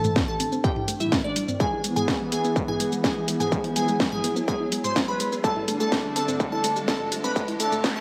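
A distorted, overdriven electronic kick thumps up front from 0.2 s in this dark, dramatic 125 BPM melodic techno build-up, alongside an overdriven techno kit with a cracking snare, hi-hat, shaker and toms, a smooth, vibrato-laden synth lead with chorus, sidechain pumping and tape echo, a crystalline wavetable pluck on a second line above it, soft round pluck arpeggios tucked in the background under a filter sweep, bold brassy analog pad stabs that also sweep through their filter, and a deep, moody ambient pad, all over Am, E7/A and Dm7/A chords in a lush hall reverb, while a riser climbs from 0.5 s and a noise sweep arrives at 7.4 s in this short excerpt.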